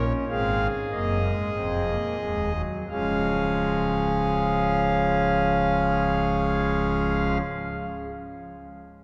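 A long cathedral reverb, about 4.3 seconds, surrounds this short excerpt of a baroque-style four-part fugue, played solo on a pipe organ's foundation stops, thick and up front with romantic voicing that spans from deep bass to high treble. The mood is joyful and elegant at a stately 42-50 BPM in 4/4, and the opening slows as an Ab7 chord resolves to Db major at 2.9 seconds. The organ sounds until 7.4 seconds, its tone hanging on in the resonant space.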